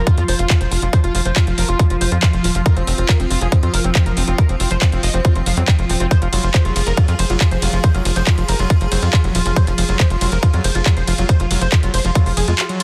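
Dense and heavily limited in a digital ambience, this hypnotic, alien psychedelic trance excerpt sets an up-front, tight electronic kick and a layered drum kit of handclaps, metallic hi-hats and ride cymbal beneath a driving sawtooth-and-square sequencer bass, while a squelchy, distorted acid riff with chorus and dub echo screams in the background, a thick, detuned unison lead with vibrato, phaser and tape echo carries the melody, and an evolving, morphing wavetable pad with phaser and reverb holds bright sustained chords, the acid line, lead and pad all pumping with sidechain compression.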